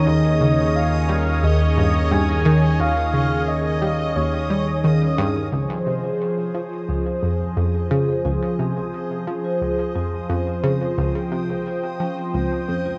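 Ambient, sequencer-driven space music at 88 BPM in Db lydian, luminous and expansive, where a swirling phased analog pad holds sustained chords up front beside a round analog pluck riff with chorus and delay and a bubbling stepped-filter texture, while a breathy flute-like synth lead sings a melody with lush chorus and delay until about 5.2 seconds over a fat, thick analog bass that holds until 5.5 seconds, when the harmony moves from Eb7sus4 to Dbmaj7 and a mellow soft-mallet vibraphone fades in with delayed arpeggios, all in an echo-heavy mix with a wet plate reverb in this excerpt cut from a longer piece.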